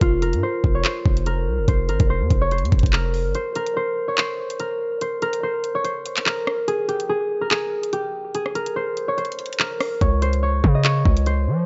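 A thumb-plucked concert harp, a hard-hitting 808-style bass and an electronic drill drum kit all open this tense, dark hip hop fragment together, set in a half-time feel. The harp carries the melody in a mellow, ringing midrange, softened by a low-pass filter and trailed by an analog delay. The drums sit up front with a knocking kick, bright hats, handclaps and rim clicks, all overdriven and roughened by vintage 12-bit sampler grit. The punchy sine bass, with its noise layer and fast, decaying attack, drops out at 3.3 seconds for a break that leaves the harp and drums over a bare stretch. The heavy low end returns at 10.0 seconds under a shift to Db5, and the whole mix is bathed in echo-heavy digital ambience with its highest frequencies rolled off.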